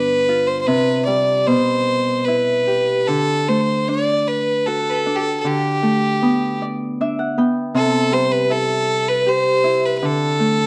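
Wistful and pastoral, this short excerpt of a Celtic slow air in three flowing rubato with uneven beats sets a clear, intense bowed fiddle with light vibrato and a slapback echo up front over a ringing, fingerpicked Celtic harp that adds a fill from 6.2 to 7.8 seconds, all captured in a dry, close 1970s-style studio sound.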